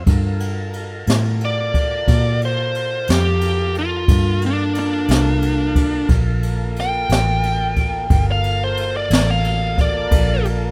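A smooth, rotary-speaker tonewheel organ holds sustained chords beneath a round, foam-muted fingered electric bass and an airy brushed drum kit with a boomy kick, high-tuned snare and dark ride cymbal, before a smooth overdriven lead guitar enters at 1.4 seconds to carry a mournful, smoky slow-blues solo in 12/8 through this rough, small-room home-demo fragment cut from a longer piece.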